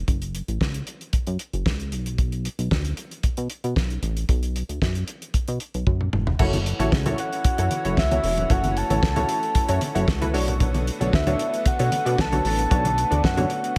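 Funky and danceable, this early-eighties boogie funk cut moves at 114 BPM in a straight 4/4, opening with a glossy, retro chorused synth bass and a damped 70s drum kit with a fat snare, tight kick and dark cymbals, both up front. After a drum fill, the second section arrives at 6.4 seconds with a punchy, nasal polysynth comp and very quiet low-tuned congas, joined a moment later by a lush unison pad sitting in the background, while a soft, round octave-layered synth lead with vibrato and diffuse ambient delay enters at 7.2 seconds over F#m7 and Bm7 chords. The whole mix feels dreamy and soaked in plate reverb, and this short passage is cut from a longer piece.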